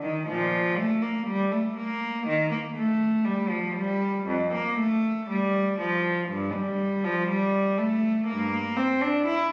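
Captured on a phone in a recital hall with a lush 1.5-second reverb, the sound places a single bowed cello up front, its gut-string tone rich and reedy in period style. This radiant, dance-like baroque-style suite movement for unaccompanied cello moves at 60 BPM in 4/4 with a flexible rubato feel. It sits in Bb major with A tuned to 442 Hz, ranges from F2 to E4, and is a 9.5-second passage cut from a longer piece.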